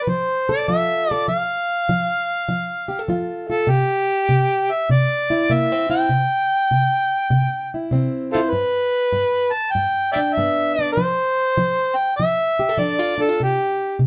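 Acoustic country blues with a soulful, rollicking swing, this excerpt pairs an amplified, gritty harmonica playing the lead melody with a fingerpicked, plugged-in parlour steel-string guitar that sounds dark and boxy underneath. The harmonica takes a jazz-style solo full of tongue slaps, scooped notes, light vibrato and a soft attack, and both instruments sit up front in a moderate studio reverb. The chords move from F to C, G and back to F before landing on a C5 at 13.4 seconds.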